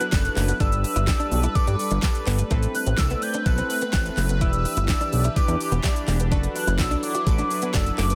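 Dance-pop at 126 BPM in a straight 4/4, this driving, confident passage sits in A dorian and is cut from a longer piece, moving through D6/F#, Gadd9, Amadd9 and Em7. Up front, an electronic, layered pop drum kit pairs a knocking kick and fat snare with crisp hi-hats, handclaps and shaker, while a very quiet, jingly acoustic tambourine adds close, dry sparkle. A fat analog bass, thick with detuned sawtooth and wave-folded tones under a filter sweep, pumps through sidechain compression from 0.1 seconds. A punchy, funky polysynth comp with chorus and a sweeping, resonant pad that swells slowly on detuned sawtooth chords also carry sidechain pumping, as a bright, clean, direct-recorded electric guitar picks a compressed riff in the background under ensemble chorus. On top, a mellow, horn-like synth lead with a round, vintage warble and vibrato carries the melody through chorus and digital delay. 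The mix is dry and dense, with a heavily limited modern master.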